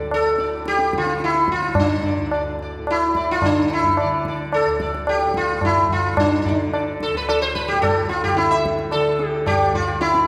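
A steady, straight 4/4 pulse at 109 BPM carries this short Hindustani classical passage, cut from a longer piece and set in raga kafi on D. The sitar leads the melody up front, its plectrum-plucked tone buzzing and shimmering with sympathetic strings as it moves between D4 and E5. Beneath it, the tanpura holds a soft, low drone from D2 to D3, its gently plucked strings adding their own buzz well back in the balance. The tabla joins at 0.1 seconds, low-tuned and ringing, sounding close and dry against the other parts. The whole is heard from further back in a scoring stage with a wet reverb, giving the meditative, introspective mood a sense of spaciousness through to the close at 10.3 seconds.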